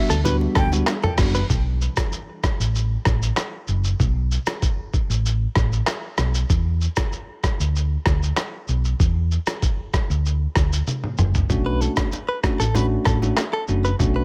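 Sultry and hypnotic, this afrobeats excerpt opens with a brief blend of airy, vibrato-tinged flute with delay, bright bell-like tine electric piano, a very quiet ethereal, warbling pad, a clean picked electric guitar riff with tremolo and delay, and soft-handed bongos and congas, over an up-front, round, dark hollow-body bass and a muffled, tape-warm, pitched-down sampler-style drum kit with a thumpy kick. These two carry on alone from 1.5 s until a drum fill at 10.9 s, after which the piano and hand percussion return at 11.5 s, joined by the guitar at 11.7 s.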